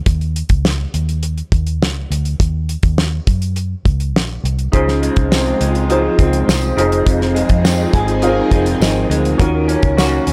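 Bass and drums open this dreamy, sunny bedroom-pop excerpt together at 0.1 s, moving at a straight 103 BPM in 4/4 in Db major. The damped 70s kit sits up front with a fat snare and a tight kick under airy hi-hat, while the foam-muted fingered electric bass sounds round and dark beside it. At 4.7 s the arrangement fills out: a mellow upright piano, slightly detuned and woody with audible action noise and a cassette-tape tint; a picked electric guitar through a small old amp, slightly broken-up and lo-fi under lush chorus and vibrato; and a swirling sawtooth string machine holding slow-attack chords in the background through ensemble chorus and phaser. A jingly tambourine joins soon after from a live room, and the piano takes a fill at 7.6 s. Chords drift from Dbsus2 and Bbmadd11 to Dbmaj7, Fm7 and Ebm7, all in a dry, gritty hardware recording with studio reverb, cut from a longer piece.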